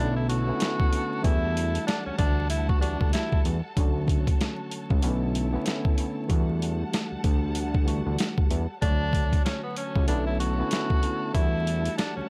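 A swung 95 BPM boom-bap groove in 4/4 opens this gritty, moody hip hop excerpt, with a compressed, pitched-down sampler-style kit entering at 0.3 seconds on thumpy kick, medium-tuned snare and hi-hat, up front beside a fat, detuned sawtooth analog bass with a filter sweep, while a worn, slightly out-of-tune, lightly overdriven tine electric piano with cassette-tape color accompanies and a lush bowed string section sustains chords over Bm11, Em11 and Dmaj7, and a warm subtone jazz tenor saxophone with vibrato and slapback echo sings its solo lines only at the start and again from 8.8 seconds, all wrapped in light reverb and vinyl crackle.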